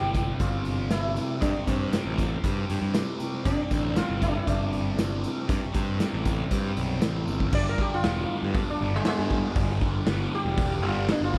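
Psychedelic rock with a hypnotic, trippy feel, this excerpt pairs a buzzing, shimmering sitar melody with slapback echo against a thick, double-tracked fuzz guitar riff treated with phaser and an overdriven, up-front picked bass, opening over a Csus2/G chord. A raw, gritty garage drum kit with a punchy kick and a pumping stone-room sound drives the groove, while a very quiet, jingly tambourine sits beneath until 7.4 seconds. A drum fill at 7.3 seconds leads into a sitar solo over G from 7.5 seconds, and the mix stays dry.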